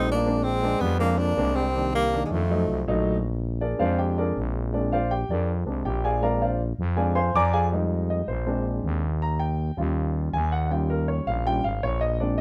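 Lightly reverberant, this lively, sophisticated jazz excerpt at 161 BPM in Bb mixolydian opens with a clear, subtoned tenor saxophone singing the melody with vibrato and scooped notes, while a plunger-muted trombone adds a wah-wah second line in the background, both stopping at 2.9 seconds; the natural-sounding grand piano, accompanying from the start, then takes a solo from 3.2 seconds as a growling, thick FM bass sits up front throughout.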